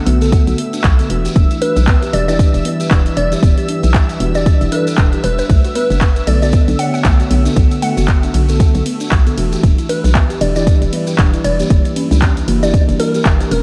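Deep and moody, this deep house excerpt moves at 116 BPM in B minor with a swung 16th-note feel, built on an overdriven, up-front electronic kick and a hollow, bouncy FM bass, with handclaps, hi-hat and ride from a tape-toned analog drum machine plus grainy, distant maracas. Mellow tine electric piano stabs and a soft, round pluck playing arpeggios both pump with the sidechain and trail into diffuse ambient delay, over a very quiet, detuned sawtooth ambient pad and a silky, bright string pad high in the background. From 1.6 seconds a glassy, crystalline wavetable pluck carries the melody through chords alternating between Bm7 and Em7 before landing on F#7b9b13, all wrapped in light reverb and vinyl crackle.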